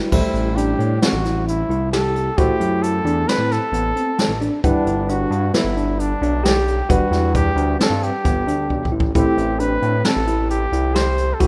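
In a rough home-demo mix with light studio reverb, this intricate, tense progressive instrumental in 5/4 sets a mellow trumpet with vibrato up front over a boomy, roomy brush drum kit with dark cymbals, a saturated, detuned synth bass, a worn, slightly out-of-tune tine electric piano playing overdriven arpeggios and a vintage grand piano with deep bass and long sustain, moving from Am7 to Gmaj7 before a drum fill at 8.7 seconds brings it back to Am7 in this fragment of a longer piece.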